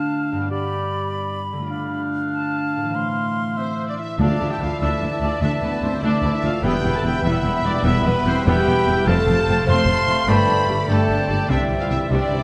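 Cinematic heroic adventure score in a swashbuckling 6/8 at 98 BPM in D dorian, where airy flute, dark clarinet, warm oboe and ringing harp arpeggios build from the start before a lush, distant violin melody arrives at 3.6 seconds with mellow French horn chords and clear trumpet stabs, then a very quiet second violin line, smooth violas, trombone chords, a focused double bass and a background cello section join on a hard-mallet timpani hit at 4.2 seconds, all washed in a wet scoring-stage reverb as the chords move from Dm toward a closing Cadd9.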